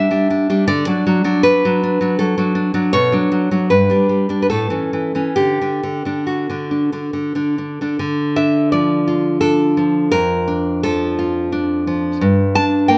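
Tender and sunny, this romantic excerpt for solo classical guitar moves in a rubato triple metre, the full-bodied nylon-string guitar fingerpicked up front with audible finger squeak, wrapped in a wet recital hall reverb as the harmony turns from major to minor at 8.0 seconds.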